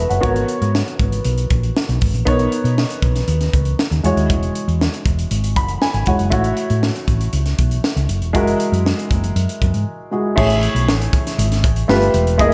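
Breezy and urban, this polished 1980s jazz-funk pop excerpt moves at 118 BPM in a straight 4/4 through lush chords like G#m11, Bmaj9 and E69, with a dreamy mix soaked in plate reverb. An intimate baby grand piano with audible action noise, short sustain and a subtle chorus shimmer plays the accompaniment and steps out with a fill at 5.3 seconds. A dark, round, punchy hollow-body fingered electric bass and a crisp fusion drum kit, with its high-tuned snare, tight kick and pumping small-room sound, sit up front beside it until a brief break at 9.9 seconds leads into a new section on Amaj7 and G9.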